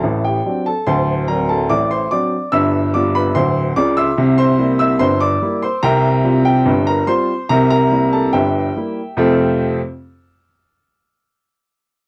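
Ragtime piano with a jaunty, cheerful feel, played at 72 BPM in a straight 2/4 in F major, tuned slightly flat at A4 = 437 Hz. A solo upright piano with a woody tone and long sustain sits up front, ranging from D1 to E6 as it moves through D7, G7, C7 and C7sus4 before landing on F at 9.2 seconds, shortly before the piano stops at 9.8 seconds. Light reverb and the worn, warbling pitch drift of old cassette tape give this fragment, cut from a longer piece, an aged character.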